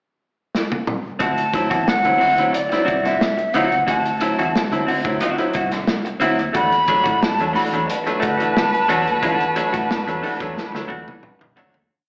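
Funk at 90 BPM with a strutting, gritty mood opens on a crunchy breakbeat drum fill at 0.5 seconds, then a breathy, close-miked silver flute carries call-phrase motifs over a tight sixteenth-note groove, a foam-muted fingered bass riff with chromatic approach notes, clean semi-hollow guitar scratches soaked in spring reverb and bright, slightly detuned upright piano stabs moving from D9 to E9sus4, with slapback echo on the drums, flute, guitar and piano, while a horn section joins at 7.9 seconds with sustained long notes as the piece fades out from 9.2 seconds through a reverberant club sound with an AM radio tint.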